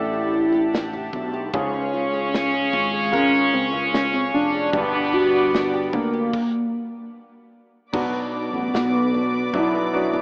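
Heartbroken and emotional, this pop ballad moves at 75 BPM in a straight 4/4 in B minor, and the clip is cut from a longer piece. A velvety synth lead with chorus and vibrato carries the melody, over a clear, polished baby grand piano and a soft, floating string section holding sustained chords, with a small fingerpicked nylon-string guitar adding arpeggios in the background. A growly fretless electric bass with ensemble chorus anchors the low end, and a studio drum kit with bright cymbals and a punchy kick enters at 0.5 seconds. At 1.5 seconds a muted, nasal, metallic French horn section steps up front with a second line carrying tape echo, stopping at 6.3 seconds as the arrangement breaks into a stop. The music resumes at 7.9 seconds on a B minor chord, heading into a new section. A lush hall reverb surrounds the parts, though the overall sound is a rough home demo mix with an AM radio character.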